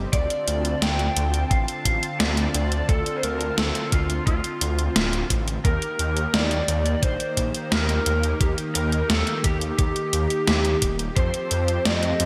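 A dark, overdriven lead guitar through a small cranked amp carries the melody in this nocturnal, nostalgic synthwave excerpt, its picked, lo-fi tone bathed in lush chorus and delay. The piece moves at 87 BPM in a straight 4/4, cut from a longer piece, with chords shifting from Dm to Eb at 5.6 seconds and settling on Fadd9 near the end. Up front, a gated 80s digital drum machine drives the hi-hat and snare with overdrive and a gated reverb snare, joined by a thumpy, tape-tinged electronic kick that drops out at 11.3 seconds. A thick, detuned saw bass sits prominently underneath, treated with chorus and sidechain pumping. A soft, mellow supersaw holds full-bodied sustained chords, colored by analog chorus and its own sidechain pumping. The whole mix sits in a lush hall reverb with a bright 1980s-style digital sheen.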